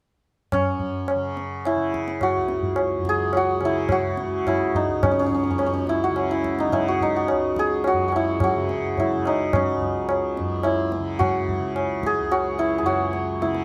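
A shimmering, hammered santur sits up front and carries an introspective, longing melody in raga Bageshri. It plays in its middle register throughout this short cut from a longer Hindustani classical piece. Beneath it, a softly plucked tanpura holds a buzzing low drone while a low-tuned tabla with a short ring keeps a straight four-beat pulse, all three playing from 0.5 to 13.6 seconds under close, detailed miking and light reverb.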